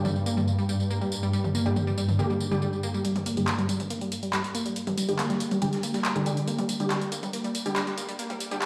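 Driving peak-time techno at 140 BPM in G minor, this intense excerpt from a longer piece pairs an up-front, detuned sawtooth pluck riff carrying 12-bit grit and tape echo with aggressive, thick rave stabs under filter sweeps, chorus and dub echo, a swarming granular drone that sustains on G2 until 3.1 seconds, and a punchy, tape-warm analog drum machine of handclaps, hi-hat, tambourine and toms, while from 3.0 seconds a very quiet, gritty breakbeat kit of hi-hat and snare joins the build-up as a filter sweeps an arpeggio sound, all set in a wet digital room reverb on a big sound system.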